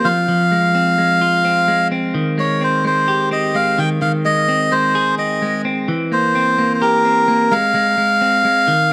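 A reedy, breathy melodica and a bright, twangy clean electric guitar begin together, the melodica carrying the melody up front while the guitar picks out arpeggios beneath it. This short indie pop passage, cut from a longer piece, moves at 129 BPM in a straight 4/4 and sits in F minor, with a restless, wistful mood. The guitar's compressed, picked tone stays close and present, and the melodica has a nasal, plastic-cased character. The harmony moves from Fm through Abmaj7 and a rootless Fm7/Eb to C7 at 5.9 seconds, settling on Ab6 near the end. Light reverb and a small room ambience frame the two parts, which both play throughout the 8.9 seconds.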